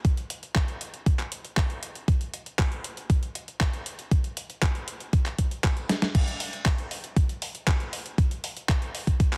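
A thumpy, overdriven electronic kick sits up front, sampler-style and re-recorded in a large room, driving this nostalgic, melodramatic italo disco fragment in a straight 4/4 feel. Beside it, a clean 12-bit digital drum machine, also overdriven and sampler-style, supplies a medium-tuned snare, handclaps, hi-hat and crash cymbal. A drum fill at 5.9 seconds leads into a new section at 6.1 seconds. The mix carries little reverb and a heavily compressed, radio-like sound.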